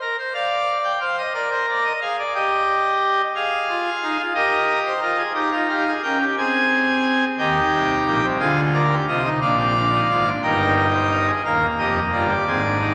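Moving in a straight 6/8 at 60 BPM in dotted quarters, this stately yet lively baroque-style four-part fugue for solo pipe organ sounds on full organ with brilliant mixtures and a majestic, romantic voicing up front, spanning Eb1 to Ab5 at A4 = 439 Hz, bathed in a 2.9-second church reverb with vinyl crackle as its harmony travels from Csus24 through Bb7 and Eb/G to settle on Eb at 11.4 seconds before this fragment of a longer piece ends at 12.9 seconds.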